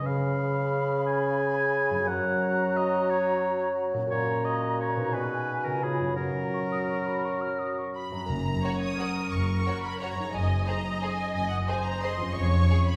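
An elegant, festive orchestral ballroom waltz in F# major at 176 BPM in 3/4, this excerpt opens with a thumb-plucked concert harp sounding ringing arpeggios beside an up-front solo oboe with a clear, vibrato tone. A pure, expressive flute with soft attack and a mellow clarinet add further second lines, while a solo bassoon supplies the accompaniment beneath, all shaped with uneven beats and rubato. At 8.0 seconds a lush studio violin section takes the melody with a rich, focused sound, and from 8.3 seconds bowed cello and double bass sections sit smooth and even in the background, joined briefly by timpani played with medium mallets on calf heads. A distant symphonic violin section and an intense viola section fill the inner parts as the harp carries on to the close at 13.0 seconds. The harmony moves through chords such as C#7, F#, G#m7/B and G#7/F#, and a wet scoring-stage reverb places the orchestra further back in the room.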